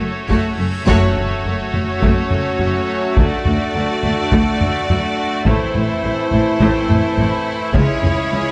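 A rich, dark orchestral sound fills a moderate scoring-stage reverb in this dramatic, epic film-score excerpt in F# minor at 105 BPM, where a focused, vibrato-laden violin section carries the melody over a distant, intense second violin line, a smooth viola accompaniment and a bowed bass of lush cellos and double basses. Sustained chords come from roomy French horns, a tight, vintage-toned trombone section and a hollow pipe organ clarinet stop with chiff and tremulant, while a heavy-sticked taiko ensemble drives the music from 0.3 seconds as the harmony moves through F#m, D, Am and C#m. A huge, bright reverse cymbal rises at 0.7 seconds into an impact and band accent at 0.9 seconds, opening the main section.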